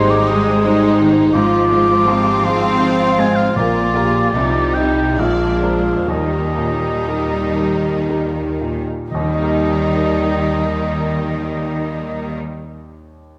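Bathed in the reverb of a concert hall, this lush, lyrical classical excerpt in Eb major moves in a rubato 3/4 at 57 to 84 BPM, gradually slowing, as a clear, present grand piano carries the melody alongside a warm violin section in the background, while a close, focused second violin line and a solo oboe with vibrato add second lines, a distant viola section supplies the accompaniment, a dark French horn section holds sustained chords, rich cellos and double basses anchor the bass, and very quiet timpani with round, soft mallets enter at 3.6 seconds before the orchestra stops at 12.4 seconds and the piano rings alone to 13.4 seconds.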